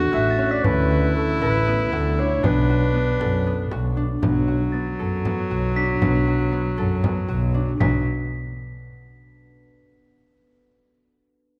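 A bowed viola with a reedy gut-string tone and light vibrato, fingerpicked concert harp arpeggios that ring out, and a dark, woody bowed double bass up front open this hypnotic, restless chamber piece in 7/8, joined at once by a distant, roomy solo clarinet carrying a mellow classical melody until 4.0 seconds, a warm frame drum in the background, and a soft, bell-like glockenspiel played with rubber mallets that drops out at 1.2 seconds and returns at 4.7 seconds, all set in light reverb with close, detailed sound.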